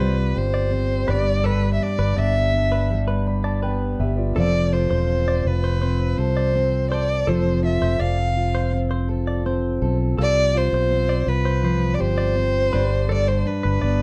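A single bowed violin carries the melody up front, its close, expressive line marked by vibrato, soft attacks and portamento, with a plate reverb around it. This heartfelt, sunny acoustic pop excerpt moves at 82 BPM in a straight 4/4, set in F lydian. Beneath it, a fretless electric bass sits forward with a round, punchy, dark tone, while a fingerpicked jumbo steel-string acoustic guitar gives warm accompaniment. A clean, compressed electric guitar, recorded direct, adds picked arpeggios, and a concert grand piano with deep bass and long sustain rests in the background. All five parts play throughout the 14 seconds over a Csus4, G and F progression, in a dark production with light reverb.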